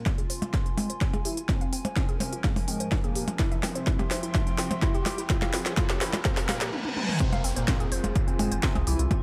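The punchy electronic kick drum stands out most, up front with a tape-warm, small-room character, driving a melancholic, dramatic melodic techno passage in F harmonic minor at 126 BPM in a straight 4/4. A layered techno kit with a cracking snare, smooth hats, toms and percussion blips sits beside it, while a fat, detuned sawtooth lead carries the melody in the background through analog chorus, delay and sidechain pumping. Beneath, a very quiet, moody analog pad holds sustained chords moving from Fm through Bbm7/F, C/F and Gdim/F, joined by a warbling, nostalgic lo-fi pad and a woody, wave-folded pluck playing arpeggios through tape echo. The first 7.2 seconds are a build-up, with filter sweeps on the pluck and the lead, drum fills, faint risers and a reverse cymbal from 6.3 seconds. At the drop at 7.2 seconds, an airy, dreamy second lead enters, and a round, deep analog bass follows, pumping under the kick, all within light digital ambience in this short cut from a longer piece.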